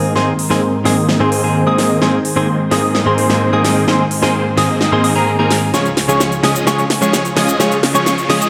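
Triumphant and anthemic, this short cut from a festival progressive house track is a build-up in Ab major at 129 BPM in a straight 4/4, moving from Abadd9 to Db at 5.7 seconds. Huge, detuned supersaw chords carry the riff under a low-pass filter with tape echo, and a filter sweep runs across them for the whole passage. A clean, compressed electric guitar recorded direct supplies picked accompaniment with tape echo, while a thick sawtooth-and-square pad holds sustained chords with chorus in the background. High above, a punchy, catchy plucky lead spins bright arpeggios, its square and sine layers edged with noise and treated with subtle chorus and tape echo. The layered big-room drum kit arrives at 0.2 seconds with a drum fill of huge snare, crisp hats and shaker, all high-passed, and a very quiet riser enters at 7.7 seconds, the whole mix set in a moderate, lush hall reverb.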